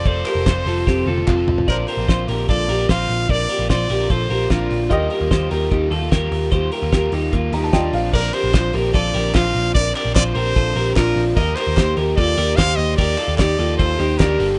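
A brilliant trumpet melody with light vibrato and scooped notes opens this bright, nostalgic slice of jangly indie pop. It arrives together with a chiming, twangy twelve-string electric guitar playing arpeggios, a crunchy overdriven guitar and a woody, slightly detuned upright piano. At a brisk 148 BPM in Bb major, a foam-muted, round picked bass and a cloth-damped, thuddy drum kit join almost at once, the kit offering a fat snare, tight kick and dark cymbals. Crisp group handclaps sit in the background, and a drum fill leads into a new passage where the chords move from Fadd9 through Bbadd9 and Ebadd9. The trumpet drops out for a stretch while the piano carries on, then the piano closes its part with a short fill at 7.3 seconds as the trumpet and handclaps return. The rough home-demo sound has small-room ambience, a dulled top end and a faint mains hum.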